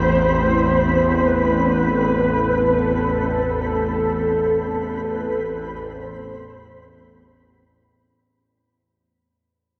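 A mellow, round horn-like synth lead carries a melody through ensemble chorus and tape echo above a tense, string-like bowed drone, a deep, moody ambient pad sustaining an A minor chord, and a flickering grainy texture, all suspended in a huge reverberant space in this desolate, unsettling dark ambient drone in free time, cut from a longer piece, which fades out from 2.0 seconds.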